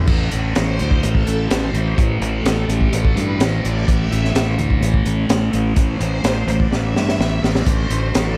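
Psychedelic rock with a mysterious, trippy mood, this echo-heavy fragment pairs a swirling, warbling string machine holding bright sustained chords with a double-tracked fuzz guitar riff, an up-front overdriven fingered bass, crunchy breakbeat drums with dark cymbals, a high-tuned snare and a fill at 6.7 seconds, and a very quiet, eerie metallic drone entering at 0.8 seconds, as the harmony moves from A minor to D5 over A.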